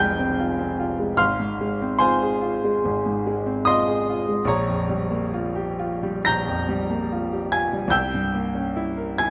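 Brooding and passionate, this short passage of a romantic character piece for solo piano unfolds in F minor at a rubato 62-75 BPM in 4/4. A warm, intimate grand piano carries everything alone, ranging from F1 up to Bb6 and sitting up front with a natural tone and audible action noise. The harmony settles on F minor, moves to Fm/Ab at 1.2 seconds, darkens into Gm7b5/Bb at 4.5 seconds, and reaches a tense C7b9 at 7.9 seconds. A wet recital hall reverb with a 1.8-second decay surrounds the instrument, tuned to A4 = 437 Hz. Lasting 9.3 seconds, the fragment is cut from a longer piece and breaks off on that unresolved dominant chord.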